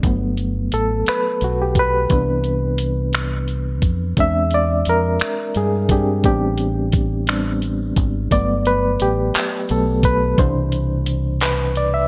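This slow R&B groove in 6/8 opens with three parts together: a barky, reedy electric piano, a deep fingered electric bass and a dusty sampler-style drum kit. At 58 BPM, counted in dotted quarters, the G major feel is straight and intimate. The electric piano takes a solo across the whole cut, bright and lightly overdriven with a fast tremolo, sounding through its built-in speakers. Beneath it, the bass sits dark and round, direct and amped. The drums mix finger snaps, handclaps, hi-hat and a thumpy kick, compressed and gritty with gated reverb, and they stop at 11.9 seconds, just before the other two parts. The harmony moves through Gmaj9, Cmaj9, E7alt and Am11 before returning to Gmaj9 and Cmaj9, and the bright 1980s-style digital production adds light digital ambience, with all three parts up front in this short section cut from a longer piece.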